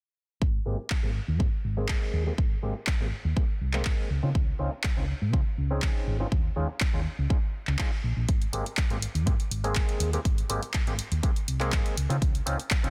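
A dense, heavily limited modern master sits in a digital ambience, with a filter sweep running across this short cut from a longer piece of filtered disco house. The feel-good, funky groove rests on a punchy, up-front electronic kick and a layered house kit of handclaps and hi-hats, the hats pumping against the sidechain. A dark, round hollow-body short-scale electric bass, fingered and amped, carries the low end through a low-pass filter with sidechain pumping, ranging from Ab1 to Db3. Above it, an overdriven clav played through a combo amp adds a stringy, percussive accompaniment with phaser, sidechain pumping and its own low-pass filter, entering at 0.7 seconds. The harmony moves from Abmaj9 to Dbmaj9 and Eb9sus4 before returning to Abmaj9.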